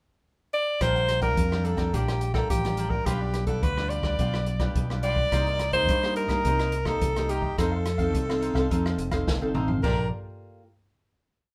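Samba and choro at 106 BPM in Bb major, a short, playful and festive piece where a breathy alto saxophone carries a motif-based melody up front with vibrato and a soft subtone, entering during a brief pickup bar. A bright, crisp cavaquinho strums in sixteenths while a fingerpicked nylon-string guitar plays thumb bass under syncopated plucked chords, a fingered electric bass holds a samba figure, and an open jazz drum kit with dark cymbals and a boomy kick keeps a samba groove. The harmony moves from Bb6 through G7/B, Cm7 and F7, and a drum fill at 9.3 seconds leads into a final Bb6 chord, all set in a moderate studio reverb.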